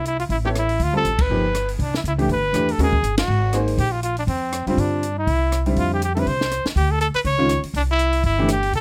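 A warm, up-front trumpet with light vibrato and a woody, thumpy pizzicato upright bass open this playful, relaxed small-group swing and bop excerpt at a brisk 242 BPM in C major, joined at 0.1 seconds by a compact cocktail kit with dark cymbals, a high-tuned snare and a punchy kick, then at 0.4 seconds by a clear, vintage upright piano, with band accents at 1.2 and 3.2 seconds and a dry, closely miked sound.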